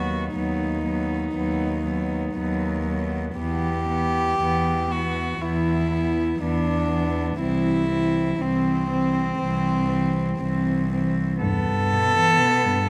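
In a rubato 4/4 at 60 BPM, this melancholic, yearning classical passage for cello ensemble, cut from a longer piece, sets a rich, pure, floating cello melody up front over a dark, intimate second cello line, a warm sul tasto accompaniment cello with airy bow and light vibrato, and a bass cello that stops at 12.2 s, all four bowed with soft attacks through B/D#, Em, C and back to Em in a detailed, close-miked sound with moderate scoring-stage reverb.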